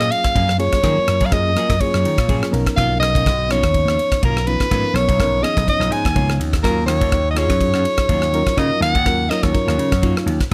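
A swung sixteenth-note groove at a steady 4/4 pulse drives this soaring, funky electric jazz fusion excerpt, where a breathy soprano saxophone with light vibrato carries the solo melody up front over a punchy vintage slap bass, a reedy electric piano with light overdrive and fast tremolo, very quiet dark stabs from a clean picked electric guitar, and a crisp, polished drum kit of tight kick, bright ride cymbal and rim click, all set in light reverb as the chords move from F#maj9 to Bmaj9#11 at 2.5 seconds and D#m9 at 6.6 seconds.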